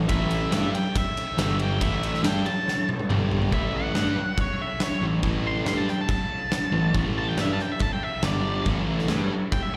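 A straight 4/4 drive at 140 BPM in A major powers this raunchy blues rock and southern rock power-trio excerpt, heard live through a venue's PA, as an oversized low-tuned acoustic drum kit with a boomy kick, fat snare and dark cymbals pumps up front and lands a fill at 2.7 seconds, a thick double-tracked fuzz guitar riff with slapback echo and a growly picked electric bass churn beneath a distorted octave-fuzz lead guitar solo, and a very quiet overdriven tonewheel organ holds gritty sustained chords through a slow rotary speaker while the harmony moves between A and G5.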